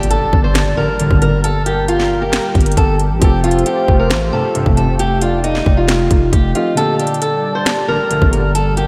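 Hip hop and trap with a menacing, brooding half-time feel, led by an up-front fingerpicked acoustic archtop guitar melody through a low-pass filter and delay, joined by a second line from a soft octave-layered synth lead with chorus, phaser and vibrato, over a very quiet felt-muted upright piano, a dark detuned analog pad, a growling, buzzy 808-style bass and a trap kit of hard-clipped kick, sharp snare, metallic hi-hats and finger snaps, while a faint electronic impact opens the excerpt, glossy chorused polysynth stabs land near 0.8, 4.3 and 7.9 seconds, and a brief break interrupts the groove in a dreamy mix soaked in lush hall reverb.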